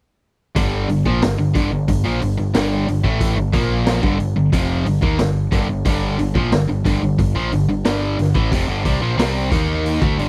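A pair of bright, overdriven cranked stack guitars drive a picked riff over a Gm chord from 0.6 seconds, alongside a growling, overdriven picked bass and a raw, gritty garage drum kit with a punchy kick and rolled-off top, giving this swaggering 90 BPM classic rock excerpt in G minor a dry, close 1970s-style studio sound.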